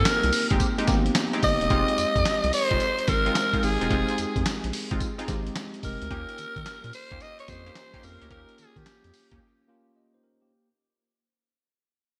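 A breathy, raspy alto saxophone leads this confident, bouncy new jack swing excerpt at 109 BPM, singing an up-front pop-style melody with vibrato and scooped notes over a tine electric piano with subtle chorus and a round, deep analog bass, moving through Abmaj7, Fm7 and Eb7. A gritty, compressed sampler-style drum kit with thumpy kick, handclaps, hi-hat and tambourine drives the swung 16th-note groove, while a punchy, detuned polysynth comp adds funky stabs with a filter sweep, chorus and delay. The bright 1980s-style digital production sits in a lush hall reverb, and at 9.4 s the band drops into a break that leaves the electric piano ringing to 10.7 s as the passage fades.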